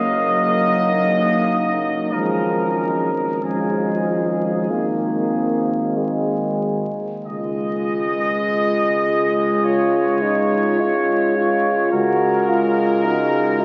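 Classical brass band music in a hymn-like vein, this tender, warm fragment of a longer piece moves slowly at 46-55 BPM in 4/4, with a rubato feel in Db major tuned to A4 = 438 Hz. A trumpet section carries the melody up front, clear and close-miked with a light vibrato, while a French horn section sits tightly in the background on a second line, mellow with a smooth top. Beneath them, a solo euphonium with a clear, soft-attacked tone and a clear, close-miked solo trombone supply the accompaniment, and a distant, roomy tuba with gentle vibrato and a mellow sound holds the bass. All five parts play together from start to finish, with the harmony settling onto Db at 7.2 seconds before closing on a Gbmaj13 chord over Db at 11.9 seconds. A very wet cathedral reverb lets each chord ring long, and the whole sounds like a very old 78 rpm record, with vinyl crackle over an aged surface.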